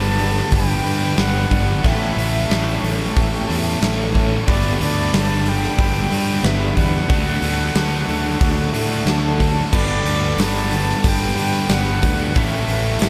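Shoegaze-leaning dream pop rock, wistful and blissful, built on a breathy, close-miked concert flute melody trailed by diffuse ambient delay over a very quiet, morphing wavetable pad with a phaser and a shimmering, octave-doubled twelve-string acoustic guitar picking arpeggios. A thick wall of riffs comes from a biting overdriven guitar with reverse reverb sitting in the background, a bright double-tracked distorted electric guitar and a dark fuzz guitar, all underpinned by a fuzzed, fingered electric bass. A huge arena drum kit with a punchy kick and bright cymbals sits up front from 0.2 seconds, a jingly tambourine joins at 10.1 seconds, and the whole mix is soaked in a huge, dreamy reverb.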